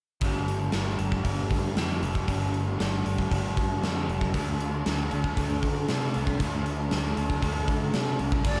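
A dreamy mix soaked in lush hall reverb frames this wistful shoegaze and dream pop rock excerpt at 116 BPM, moving from Gsus2 to Dm at 4.3 seconds. Up front, a dark, lo-fi electric guitar through a small old amp plays a riff with reverse reverb beside a gated 80s drum kit with bright cymbals, a tight kick and a medium-tuned snare. A compressed fuzz guitar with ensemble chorus riffs in the background over a growling, overdriven fingered bass, and at 8.5 seconds an airy, close-miked concert flute enters on a single expressive D5 with vibrato.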